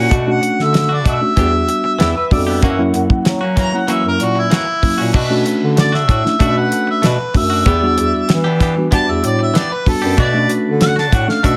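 A lightly reverberant, dry-drummed recording of mournful, soulful straight-eighth soul blues, cut from a longer piece, opens with an overdriven harmonica whose scooped, lightly vibrato melody sounds distant and roomy over a mellow tine electric piano, twangy spring-reverbed stabs from a clean direct electric guitar, a breathy subtone bass clarinet carrying the bass line and an up-front damped 70s kit with a fat snare and tight kick, while a slightly broken-up, lo-fi guitar through a small old amp adds a brief second line from 2.0 to 3.4 s, and at 5.1 s the harmonica takes its solo as a bright, punchy horn section enters in the background with smooth sustained chords.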